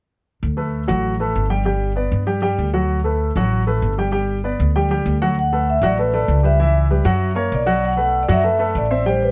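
Lightly reverberant, this lively, danceable Afro-Cuban jazz excerpt opens with woody pizzicato upright bass and a warm baby grand piano up front, before a mellow, ringing vibraphone played with soft mallets, its motor off and touched with analog delay, takes the melody at 5.4 s.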